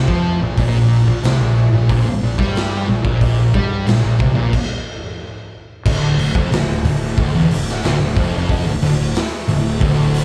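An up-front fuzz guitar, dark and distorted with slapback echo, drives a brooding, sludgy stoner and doom metal riff over a very quiet second fuzz guitar, a growly overdriven fingered bass in the background and a gritty, saturated garage drum kit of punchy kick, snare, hi-hat and crash in a bright stone room, heard as a live club gig through the venue's PA and breaking at a stop from 4.5 to 5.9 seconds before the harmony moves from Bb5 to Dm.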